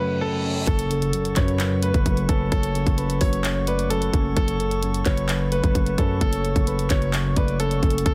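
A half-time trap groove in 4/4 arrives at 0.7 seconds, when an impact lands after a reverse cymbal and the up-front drum kit of hard-clipped kick, bright hats and handclaps kicks in alongside a growling, buzzy 808-style bass. Over a single F# minor chord, this dark, brooding hip hop excerpt sets a bright concert grand piano melody, filtered and tape-echoed, against a clean tine electric piano through built-in speakers, while an airy, unsteady flute section with vibrato sustains chords in the background. A breathy, flute-like synth lead with chorus and tape echo adds a soft second line from 0.9 seconds, all within a dense, heavily limited digital ambience.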